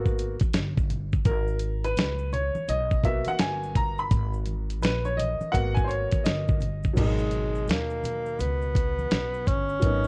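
This mellow, smoky jazz-hop cut opens on a clear, woody upright piano soloing over a G#m9 chord, joined by a growly pizzicato upright bass in G# minor. A gritty, compressed sampler-style drum kit sits up front at 84 BPM in 4/4, with a thumpy kick, a medium-tuned snare, hi-hat and crash cymbal swinging on the sixteenths. Maracas and congas add soft acoustic colour in the background of a small room. At 7.0 seconds a breathy tenor saxophone takes the melody, its subtone, light vibrato and scooped notes giving a jazz-style lead that stays in a low, intimate register. The mix is coloured by worn old cassette tape with a warbly pitch drift, lending the fragment a hazy, lo-fi character.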